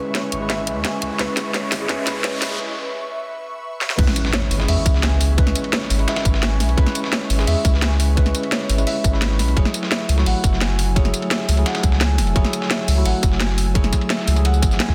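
A round, deep sine sub bass sits up front in this melancholic, rolling liquid drum and bass excerpt at 172 BPM in C# minor, joined by a clean tine electric piano with delay, an ethereal detuned pad with chorus and reverb in the background, and soft felt-muted upright piano arpeggios with audible action noise, while an overdriven drum and bass kit with a cracking snare and bright hats builds through a filter sweep, fill and brief break alongside a background riser until the drop at 4.0 seconds brings an impact, a tight overdriven electronic kick and a gritty, tape-warm sampler-style kit recorded in a large room, all under a dense, heavily limited master.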